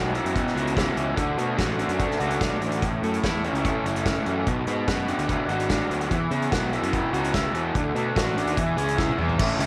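Upbeat yet wistful, this short indie rock excerpt drives along at 146 BPM in a straight 4/4, cut from a longer piece. A raw garage guitar carries the riff from the start, overdriven, lo-fi and double-tracked, sitting up front with a picked attack. Beneath it, a fuzz-laden electric bass growls with a bright, direct-and-amped edge, also overdriven. The loose acoustic drum kit enters at 0.1 seconds, heard as distant and roomy despite being placed up front, with dark cymbals, a medium-tuned snare and a tight kick, and a drum fill arrives at 9.0 seconds. The chords move from Esus2 through D, A and Bm before circling back and landing on E, all set in a small room with moderate spring reverb.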